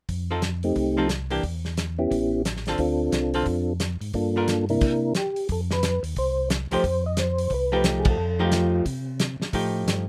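A light reverb sits around this greasy, soulful soul jazz organ trio excerpt, swinging at 178 BPM in F mixolydian, with a round, lightly overdriven tonewheel organ bass carrying key click and chorus vibrato under a tight, up-front acoustic drum kit with a fat snare and dark cymbals. A soft, flute-like second tonewheel organ plays the melody through a slow rotary speaker with percussive attack, while a clean, picked hollow-body archtop guitar comps until 4.5 seconds and returns at 6.7 seconds. The band hits a shared accent at 8.0 seconds as the chords move from F7 through A7, Dm7, Gm7 and C7 to F9.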